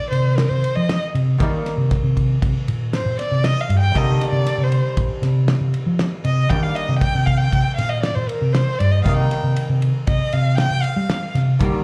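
Set in a straight 5/4 at 118 BPM, this tense, brooding progressive instrumental in C minor is cut from a longer piece and heard as a live gig through the venue's PA with club reverb, featuring an expressive bowed violin solo with vibrato, portamento and slapback echo over a clean, picked, double-tracked archtop guitar, a round, up-front hollow-body fingered bass and a dry, damped 70s drum kit with fat snare, tight kick and ride cymbal, as the harmony shifts from Cm7 to Eb/C at 9.1 seconds.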